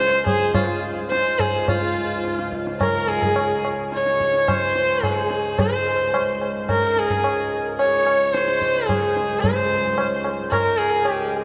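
A rich, smooth sarangi carries the melody up front, its bowed line gliding with light vibrato and portamento over ringing sympathetic strings, while a second, clearer and boxier sarangi traces a focused line in the background, both touched with analog delay. Beneath them a reedy, breathing hand-pumped harmonium holds a low drone and a low-tuned tabla with a short ring keeps a 7/4 cycle at 108 BPM, the tempo speeding up throughout this short fragment of a longer piece. This meditative, radiant Hindustani performance in Db raga yaman sits in a dreamy mix soaked in a huge ambient reverb.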